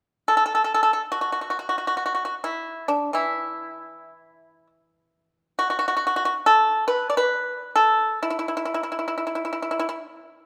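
In free time, this flowing, elegant passage of Chinese traditional music, cut from a longer piece, features a solo pipa in the E shang mode, its percussive, up-front fingerpicked tone ranging from E3 to D5 from 0.3 seconds to 10.0 seconds within a moderate scoring-stage reverb.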